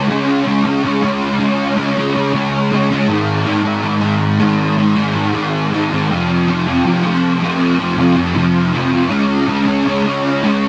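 Dreamy and hazy, this short rock excerpt moves at a relaxed 80 BPM in 4/4 with a straight feel, centred in Db major. A lone fuzz guitar carries the whole passage, played electric and picked, spanning from F2 up to Db4. Its tone is warm and distorted, double-tracked and placed up front, with an ensemble chorus adding a shimmering blur to the fuzz. The harmony steps through Db5, Ab5 at 3.1 seconds, F5, and back to Db5 at 9.1 seconds, giving the repeated section a circling, suspended quality. A light reverb surrounds the guitar, and the dense, heavily limited modern master keeps the sound full and compact.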